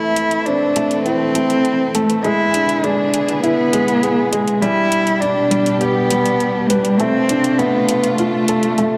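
A dark, nasal cello carries the melody up front, bowed with expressive vibrato and portamento, in this cinematic, hypnotic piano and strings electronica in A minor at 101 BPM, a build-up cut from a longer piece. A warm, woody upright piano riff with delay sits close by, while a lush symphonic string section holds smooth sustained chords through Amadd9, E7, G and F6. An overdriven electronic hi-hat with metallic hats enters at 0.2 s, and the music sits in a wet recital hall reverb.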